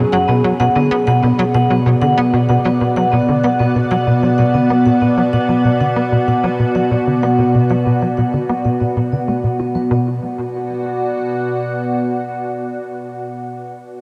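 An evolving, detuned wavetable pad with chorus and its own reverb opens this mysterious, cosmic ambient excerpt on a Bm chord, beside a punchy, nasal sequencer bass riff carrying a filter sweep and tape echo, while metallic, ringing vibraphone arpeggios with tape echo enter at 0.1 s and fade out; bass and vibraphone stop at 10.2 s, and the mellow pad sustains alone until 13.2 s, all within a huge, wet reverb and cassette-tape sound.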